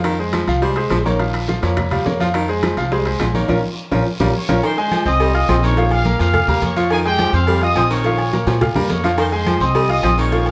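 Moderate reverb from a large studio frames this fast salsa passage in F minor at 211 BPM, danceable and passionate, moving between Fm7 and Bbm in straight 4/4. Up front, a brilliant grand piano with audible action noise and long sustain carries the accompaniment from F3 to F6, beside a woody, thumpy upright bass plucked on gut strings. A clear baritone saxophone plays a forceful second line between Eb3 and G3. Behind them sit congas with a thick skin, round low-tuned bongos with cowbell, ringing metal-shell timbales with agogo bells, and a raspy, distant guiro. A band accent lands at 3.5 seconds, and at 4.4 seconds a punchy, tight trumpet section enters with the melody, vintage in tone and shaded with vibrato, reaching up to Eb6. A drum fill at 8.3 seconds drives the passage onward before it breaks off, cut from a longer piece.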